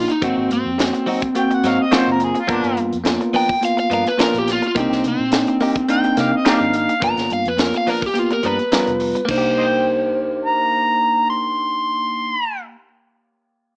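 A brooding, soulful straight-eighth soul blues in C minor opens with an overdriven semi-hollow guitar carrying the melody up front, its picked hollow-body tone set over a bell-like, clean tine electric piano and a dark, round, foam-muted fingered bass that sits low and punchy in the mix. At a moderate 106 BPM in 4/4 with a slight sixteenth-note swing, a tight funk drum kit with a high-tuned snare and tight kick adds hi-hat and crash, while a bright, compressed clean guitar, recorded direct and washed in plate reverb and analog delay, supplies stabs. At 1.4 seconds an amplified, gritty harmonica enters as a second voice, just as forward as the guitar, with light vibrato, scooped notes, tongue slaps and a soft, jazz-inflected attack in its own plate reverb. The harmony moves through Ab7, G7#9 and Cm7 before a new section settles on Cm7, and the drums drop out at 9.4 seconds. The whole piece sits in a moderate club-sized room with a small-speaker character, cut from a longer performance.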